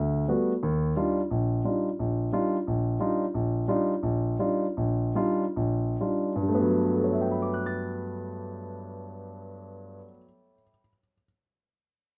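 A dry, close studio sound in the manner of the 1970s frames this short fragment of jazz, with a touch of studio reverb around a grand piano that sits up front. The piano plays alone from 0.0 to 11.2 seconds, its warm tone spanning a broad range from Bb1 up to A6. The mood is hypnotic and spiritual, set in G lydian with tuning slightly below standard at A4 = 437 Hz. In 4/4 with a swung eighth-note feel, the tempo moves between 123 and 176 BPM and slows down from 3.4 to 6.5 seconds. The harmony shifts from Gmaj9 to Ebmaj9 early on, then a new section at 6.5 seconds returns to Gmaj9 before the passage breaks off from the longer piece.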